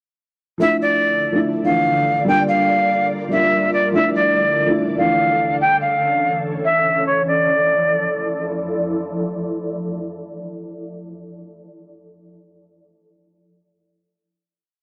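A looping jazz flute melody with airy chiff and vibrato opens at 0.6 s over boxy, dark grand piano chords repeated like a sample, joined at 1.1 s by an ethereal, detuned pad with chorus, tremolo and reverb that sustains into a final D minor add-nine chord until 10.9 s, giving this brooding, hard-hitting half-time hip hop and trap piece at 144 BPM in D harmonic minor a gritty, cassette-saturated, muffled sound in a small room.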